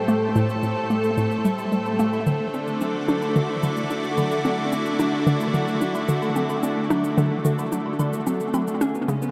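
A lush, thick unison pad sits up front with bright, detuned sustained chords under chorus, while a hollow, bouncy square-wave pluck riffs through tape echo, a dark, clean electric guitar fades in with fingered arpeggios in the background, and tape-warm shaker and woodblock fade in softly behind them, all bathed in a wet spring reverb for a mysterious, cosmic slice of sequencer-driven ambient space music whose synth arpeggio carries a filter sweep across the full 9.3 seconds.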